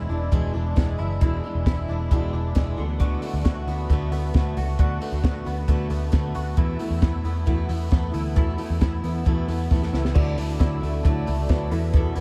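Up front, a round, foam-muted picked electric bass opens this bright, youthful stretch of jangly indie pop at 134 BPM in straight 4/4, and a small, dark cocktail drum kit with a high-tuned snare and punchy kick joins it a moment later to drive things along. A full-bodied, fingerpicked jumbo acoustic guitar and a twangy, compressed clean electric guitar playing arpeggios through ensemble chorus and tape echo move from E7 through D6 to Esus4 under light reverb. After a drum fill at 9.7 seconds, a reedy, worn, slightly out-of-tune electric piano with analog chorus slips in at the back at 10.1 seconds, just before the harmony shifts to Dadd9 at 10.2 seconds and the cut at 12.2 seconds.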